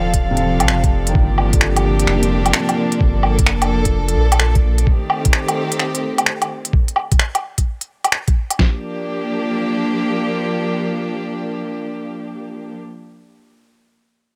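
Light reverb and a digital ambience wrap this ghostly, rainy future garage excerpt in G minor at 129 BPM, its swung 16ths carried by two up-front drum kits until about 8.7 s: a pitched-down, muffled sampler kit with a thumpy kick, and an overdriven electronic kit of finger snaps, crisp hats and woodblock. Bowed chamber strings hold sul tasto chords with light vibrato, pumping against the sidechain through F7, Gm7 and Am7b5 until 12.8 s. A boxy felt-muted upright piano with tape echo sounds briefly at the opening, while a deep, round dub sub bass and a faint glassy texture of drifting, chorused overtones stop at 4.9 s.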